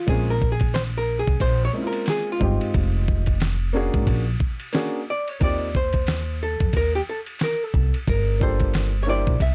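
A laid-back 90 BPM hip hop groove in 4/4, swung on the sixteenths, carries this cool, relaxed jazz-hop passage cut from a longer piece. A dusty, compressed sampler-style drum kit sits up front with a thumpy kick, a fat snare, hi-hat and ride cymbal, all roughened by vintage 12-bit grit, while a pizzicato upright bass with steel strings and a woody tone holds the low end up front. An intimate upright piano plays accompaniment with its action noise audible, moving through Bbm7, Fm7, Bb7alt, Eb5 and Gm7. Over this, a dark, clean, picked archtop guitar, miked and amplified, takes a hollow-body jazz solo from 0.0 seconds to the end. The sound is dry and gritty, with transformer saturation and vinyl crackle.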